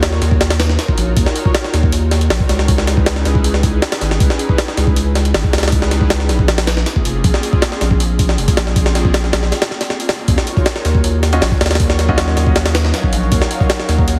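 A straight 4/4 jungle drum and bass groove at 158 BPM drives this dark, frenetic excerpt, led by an up-front, pitched-up sampler-style kit with a thumpy kick and high-tuned snare over a deep, saturated sine sub bass and an airy, breathy, chorused pad holding Ebm9, Dbm9 and Bbm9 chords, while a very quiet, crunchy breakbeat kit with shaker slips in after a short break at 10.3 seconds and a clear, intimate grand piano adds stabs carrying 12-bit sampler grit and dub echo from 11.3 seconds, all set in a small room with a heavily compressed radio sound and vinyl crackle.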